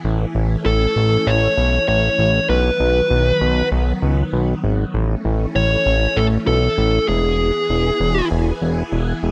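Cool and driving, this synth-pop excerpt sets a fat, detuned analog bass up front beneath a swirling, vintage string machine whose bright sustained chords glide through ensemble chorus and phaser, both parts running the full 9.3 seconds. At 0.7 seconds a dark, smooth lead guitar joins with an overdriven, picked melody coloured by digital delay, sitting up front until 8.3 seconds. The chords move A, B, A, then E, and the rough home-demo mix is dry with little reverb.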